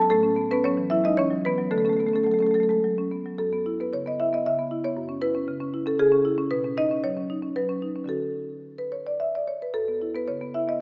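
A woody, dark solo marimba played with medium mallets sits up front in this hypnotic, flowing contemporary classical fragment in a rubato 3/4, ranging from low F#2 to A5 as it moves through lush chords such as Dmaj7 and F#7sus4, with a second passage starting at 3.4 seconds, all set in a reverberant concert hall yet heard through a small-speaker sound.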